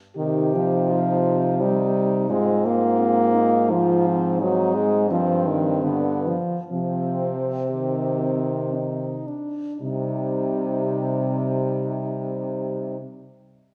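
A reverberant recital-hall sound, with a 1.5-second tail, surrounds four French horns in this solemn, melancholic classical passage cut from a longer piece. In 3/4 and C minor, the quartet moves with a rubato feel somewhere between 54 and 87 BPM and broadens as it slows from 3.4 to 9.8 seconds. The melody horn, set back in the blend, sings with a light vibrato and a present tone, while the second line, also in the background, has a smooth top. Up front, the accompaniment horn carries the warm middle, and the bass horn anchors everything beneath with a soft attack, a gentle vibrato and a vintage colour. The harmony travels from C minor through F minor over A-flat and A-flat seventh to a G seventh before settling back on C minor, and then the music turns toward a new section at 9.8 seconds.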